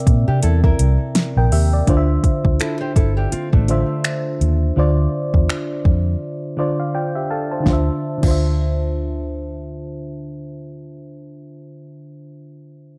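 Moody and sensual, this contemporary R&B excerpt in D minor moves at 83 BPM with a 16th-note swing, as a round, chorused FM electric piano with a low-pass filter drifts from C9 to Dm7 over a dark, foam-muted fingered electric bass and an up-front, overdriven electronic kit of soft kick, fat snare, metallic hi-hats, finger snaps and crash, while a small fingerpicked nylon-string guitar plays filtered, delayed arpeggios until 4.6 s, a filter sweep runs under the middle stretch, a break at 6.2 s is filled by an electric piano fill, and the drums drop out at 8.4 s, all set in a shadowy, cozy digital ambience.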